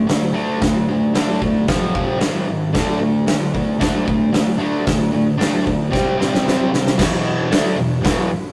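A double-tracked fuzz guitar leads this swaggering, raw garage rock fragment, its bright, compressed riff picked up front from the first second and ranging from E2 to D4. It runs through D5, F5 and G#5 chords before returning to D5 and moving to C5 and E5. Beside it sits an oversized, low-tuned acoustic drum kit, equally forward and gritty with saturation: a boomy kick, a fat snare, hi-hat and dark crash cymbals, all breathing in a big, pumping room. The tempo is a straight 113 BPM in 4/4, and a drum fill from 5.9 to 7.0 seconds carries the music into a new section that lasts until the piece is cut off. The sound has the rough feel of a rehearsal room, with tube saturation and moderate studio ambience.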